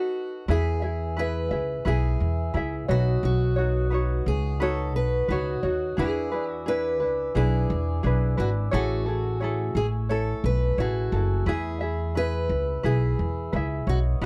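A thumpy, woody upright bass sits up front in this carefree, heartfelt acoustic pop excerpt, plucked pizzicato on steel strings from 0.5 s. A fingerpicked steel-string acoustic guitar and a tenor ukulele open the piece together at 0.0 s. The guitar carries a bright melody with the concert sound of fresh strings and audible finger squeak, while the light, fingerpicked ukulele supplies a warm accompaniment. A glass harmonica enters alongside the bass, holding pure, smooth sustained chords with a slow attack and a dark, ethereal tone in the background. The harmony moves in a straight 4/4 from E through Badd9 and E7 to Amaj7 before settling back on E, all captured in a dry, close 1970s-style studio sound with little reverb, and the guitar falls away at 14.0 s just before the other parts finish.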